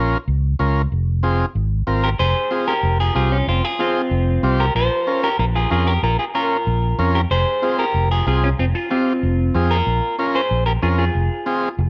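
Cumbia with a fiery, passionate drive, this short cut from a longer piece sets a buzzy, overdriven vintage combo organ with light vibrato against a dark, round and punchy fingered electric bass, with a clean, picked electric guitar carrying the melody in spring reverb from 2.0 seconds, all captured by close, detailed microphones in a lightly reverberant room.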